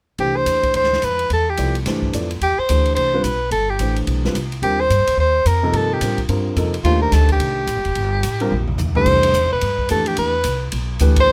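An up-front soprano saxophone with vibrato and a smooth top leads this hypnotic, open modal jazz excerpt at a swinging 216 BPM, over an intimate grand piano with audible action noise, a woody, growly pizzicato upright bass and an airy big-band drum kit with dark cymbals and a punchy kick, moving from Cmaj9 to Ebmaj9 before a drum fill at 8.5 seconds and a band accent at 11.1 seconds, captured with close, detailed microphones and light reverb.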